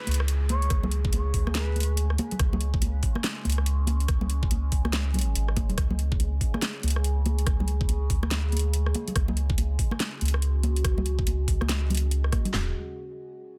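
A dense, heavily limited master in digital ambience frames this dark, meditative deep dubstep fragment, cut from a longer piece. An airy, reedy bamboo shakuhachi with vibrato and dub echo sounds only for the first 1.9 seconds, over a background downlifter and a resonant, wave-folded drone of moving overtones, chorus and its own reverb. A round, deep sub bass sits up front under a filter sweep, while half-time, swung electronic kits carry metallic hats, rim click and a soft-clipped snare, joined at 0.7 seconds by a knocking kick, handclaps, toms and a huge snare, with close, dry congas struck by soft hands and trailing dub echo.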